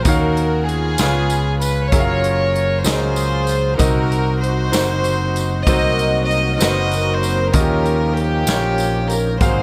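This soulful, uplifting slow gospel excerpt in 6/8 opens with a close, bowed chamber string section carrying the melody in soft-attacked, floating tones, over a clear, smooth concert grand piano and a distant, roomy big-band drum kit with a punchy kick and rolled-off top. An amped fingered electric bass sits up front, while a jingly tambourine stays in the background, all within a small room as the harmony moves through Ebm9, Db7, Gbmaj9, Cm7b5 and Eb9. At 5.7 seconds a very quiet, lightly overdriven tonewheel organ joins with full, percussive sustained chords through a rotary speaker.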